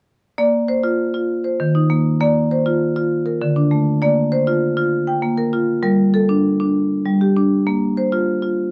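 A vintage-toned, band-limited marimba played with medium hard mallets sits up front, cycling through hypnotic arpeggios over Bb, Eb5, D5 and Gm in Bb major in this short, dry, closely recorded Southern African traditional passage at 132 BPM in a straight 12/8, cut from a longer piece.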